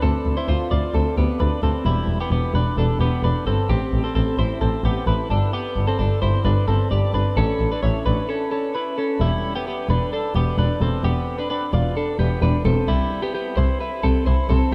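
Soaked in a moderate cathedral reverb, this dreamy, wistful stretch of jangly indie pop moves at 131 BPM in a straight 4/4, cut from a longer piece. A clean, compressed twelve-string electric guitar plays picked arpeggios through analog delay, while a bright, focused bowed double bass carries the bass line with vibrato, both sitting up front throughout. A brief break at 8.3 seconds leads into a bittersweet second section from 9.2 seconds, as the harmony shifts from Dm7 and Em7 toward a closing Cmaj7.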